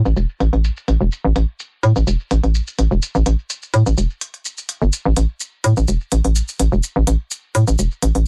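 A straight 4/4 minimal techno pulse runs through this cool, sparse excerpt, carried by a hollow, bouncy FM bass that sits up front with a punchy, fast attack and a decaying tail across a low register. Behind it, an electronic shaker and hi-hat add clicky, overdriven texture, filtered and thrown into tape echo, with the drums sounding as if re-recorded in a small room. The mix stays dry of reverb yet leans heavily on echo.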